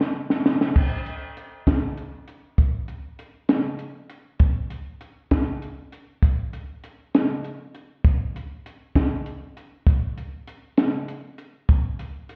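A compact cocktail drum kit carries this short rock excerpt alone, its crash cymbal, hi-hat, punchy kick and high-tuned snare sitting up front with a dark, smooth, rolled-off character. The piece moves at 66 BPM in a straight 6/8, counted in dotted quarters, and its mood is bright and playful despite the subdued timbre of the kit. It opens with a drum fill that runs to 0.8 seconds before settling into the main section, which lasts until the cut at 12.4 seconds. The acoustic kit has a small-room intimacy, framed by moderate studio reverb and the echo of a stone room. The whole recording sounds muffled, as if heard through a wall, and shaped by EQ.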